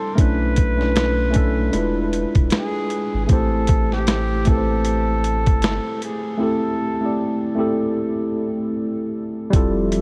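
A lazy swing on the sixteenths drives this nostalgic, melancholic lo-fi hip hop fragment, with a gritty, compressed sampler-style drum kit thumping up front over a deep, round dub sub bass. A worn, slightly out-of-tune tine electric piano carries the Bm11, E7b9 and Am7 changes through a cassette-tape haze, while a clear, vintage flugelhorn sings scooped, jazz-style notes through diffuse ambient delay until 7.6 seconds. A break begins at 6.4 seconds, and at 9.5 seconds a dark, warbling, detuned pad drifts in behind the rest of a dreamy mix soaked in huge ambient reverb.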